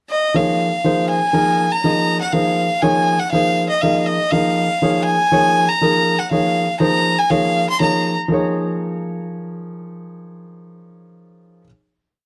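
A dry, close recording with a 1970s studio character, light reverb and lossy compression artefacts opens onto a short, driving and intense jazz piece in a swung 4/4. A clear violin leads from the very start, one bowed player up front with a light vibrato and an airy, nasal, earthy tone, carrying a motif-based melody built from song-like phrases and touched by tape echo. A warm grand piano joins almost at once as accompaniment, also up front, punching out syncopated chord stabs in quartal voicings with short sustain over a minor ninth harmony. The violin drops out at 8.2 seconds, and the piano carries on alone into a final minor seventh chord that rings until 11.7 seconds. It is a whole piece, compact and urgent from its brief pickup to its closing chord.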